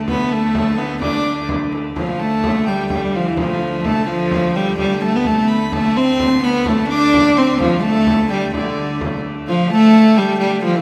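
A driving 2/4 pulse at 128 BPM carries this mysterious medieval dance in D dorian, with a deep, distant frame drum falling away at 9.2 seconds. An intimate, up-front viola da gamba leads with light vibrato, a soft attack and an airy, ringing bow, over a clear, biting hurdy-gurdy drone, while a dark, woody fiddle sliding between notes high above and a very quiet, nasal, boxy cello add second lines. The whole passage, cut from a longer piece, sits in a wet scoring-stage reverb.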